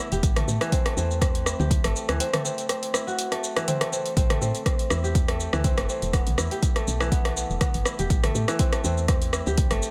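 A deep, overdriven electronic kick drum sits up front in this earthy, hypnotic afro house excerpt, cut from a longer piece and running in a swung 4/4. Around it, an overdriven afro-pop kit with metallic hats, rim clicks, shaker and toms carries the character of being re-recorded in a small room. Underneath, a round, dark FM bass with a woody tone, fast attack and decaying notes pumps against the kick. A ringing, crisp kora plays fingerpicked arpeggios in an acoustic voice, pumping as well and trailing a dub echo. The mix stays dry with little reverb, and a break from 2.2 to 4.2 seconds colors the minor harmony with an Am6 before it moves through Am and Em.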